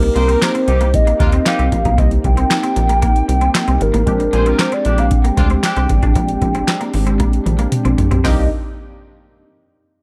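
A hollow, woody synth lead with a clarinet-like tone and vibrato carries the melody through this short, late-night boogie funk excerpt in C minor at 115 BPM, its sound thickened by chorus and a slapback echo. Underneath, a rubbery, bouncy square-wave bass and a booming analog drum machine with a deep kick, crisp snare, metallic hats and handclaps sit up front, while a detuned, ring-modulated polysynth comps and a clean, twangy electric guitar plays a riff. A distant, roomy horn section adds a second line from 0.2 seconds, the harmony moves from Cm7 to Bb13 and back, and a drum fill at 7.2 seconds leads into a new section in a dark, lightly reverberant mix.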